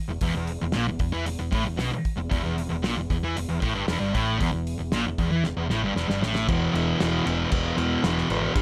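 A thick, double-tracked fuzz guitar riff sits up front from the opening of this raw, swaggering garage rock cut, grinding on an E5 chord over a round, dark hollow-body bass with a touch of overdrive. A cloth-damped acoustic kit joins at 0.2 seconds in a small room, its top rolled off, with a thuddy fat snare, tight kick, hi-hat and dim crash cymbal. A drum fill from 5.4 seconds leads into a new section at 6.5 seconds, the straight 4/4 groove sitting in light reverb.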